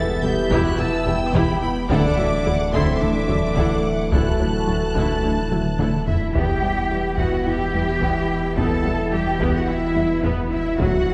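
Cinematic hybrid orchestral and electronic film score, relentless and vast, where a lightly vibrato violin melody and a lush, distant second violin line sit over background violas, clear trombones, mellow French horns, a hollow flute-like pad and a tight, detuned sequenced synth arpeggio, all anchored by rich cellos, very quiet bowed double basses and a thick, saturated sub bass, while a heavy-sticked taiko ensemble enters at 0.5 seconds and plays into a fill before the opening idea returns, the whole set back in a wet scoring-stage reverb.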